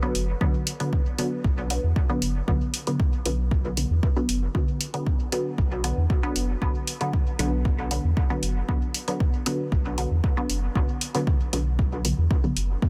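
A filtered dub chord stab opens this meditative, nocturnal dub techno excerpt, its muted, nasal tone built from detuned sawtooth and pulse waves with a filter pluck, fast attack and short decay. Sitting up front, the mellow stabs carry phaser, cassette tape coloring, sidechain pumping and dub echo, resting on a single Bm chord throughout. A round sine sub bass enters at 0.1 seconds alongside an electronic hi-hat, the bass deep and sustained with a fast attack and its own sidechain pumping. A layered electronic kick drum joins at 0.4 seconds, deep and tape-warm, re-recorded in a small room and placed up front, while the hi-hat shares that same produced, small-room character. The whole excerpt sits in a digital ambience, shaped by a dense, heavily limited modern master.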